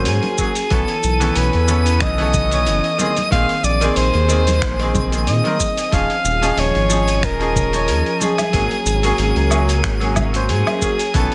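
A breathy, whispered soprano saxophone with vibrato and scooped notes carries the wistful melody through delay in this smooth sunset chillout excerpt, over a bright, worn concert grand piano filtered and echoed, a round analog bass up front, silky string-machine chords with ensemble chorus in the background, a twinkling granular shimmer high above, a gritty, tape-warm sampler-style kit of finger snaps, hi-hat, shaker and woodblock with lightly swung sixteenths, vintage congas, and a thumpy electronic kick set back in a large room.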